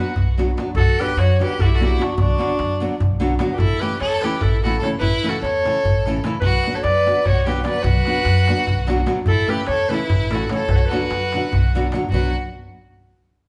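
A mellow, distant solo clarinet carries the melody over a clear, vibrato-touched bowed violin second line and small, fingerpicked nylon-string guitar from the first moment, joined by a crisp, deep metal-shelled darbuka and a woody, thumpy pizzicato upright bass in this fiery, bittersweet Balkan wedding-band excerpt in B minor and 7/8 at 296 BPM in eighths, cut from a longer piece and bathed in a large, wet studio reverb that sounds like a band playing live in one room, with its harmony moving between B minor and A.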